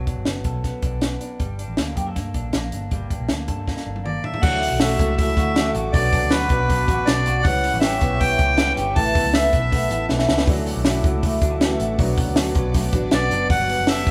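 A slightly broken-up electric guitar through a small old amp plays arpeggios over a round, foam-muted picked bass and a punchy, up-front cocktail drum kit, opening this breezy, youthful excerpt of jangly indie pop at 159 BPM in D major. A drum fill at 3.7 seconds leads into a hollow, up-front accordion melody at 4.1 seconds. The accordion is soon joined by a fingerpicked steel-string acoustic guitar, a reedy electric piano with overdrive and fast tremolo, and a swirling analog pad with phaser and chorus, all three in the background. The band sounds live in one large room with moderate reverb, and the accordion drops out at 10.1 seconds before returning near the end.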